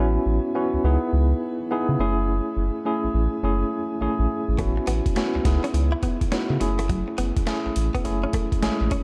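Swung sixteenths at 104 BPM drive this confident, punchy new jack swing R&B excerpt in F# dorian, where a worn, slightly out-of-tune tine electric piano with fast tremolo and shimmer reverb and a deep, nasal analog bass open over A6, C#m9 and F#m7 chords before a gritty, pitched-down boom bap drum kit with a thumpy kick and high-tuned snare arrives alongside a compressed, direct-recorded clean electric guitar riff with subtle chorus at 4.6 s, set in a dark production with light reverb.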